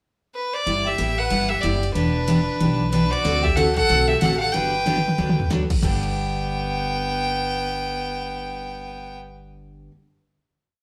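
A bowed fiddle with a clear, nasal tone and light vibrato opens this cheerful, playful western swing tune at 0.3 seconds, stating a motif-based melody in sentence-like phrases. A second fiddle, closer and earthier, soon joins with a harmony line mostly in sixths. Underneath, a bright steel-string acoustic guitar picks four to the bar with audible finger squeak, while a woody, dark upright bass plays a plucked two-beat root-and-fifth pattern with walk-ups. A punchy analog drum machine with a tape-like warmth keeps a ride cymbal pattern and swung eighths, and adds a fill at 4.9 seconds before the band settles on a final chord at 5.8 seconds. The whole band sounds as if it is playing live together in a stone room with a lingering reverb, giving this short, complete piece a lively, homespun character.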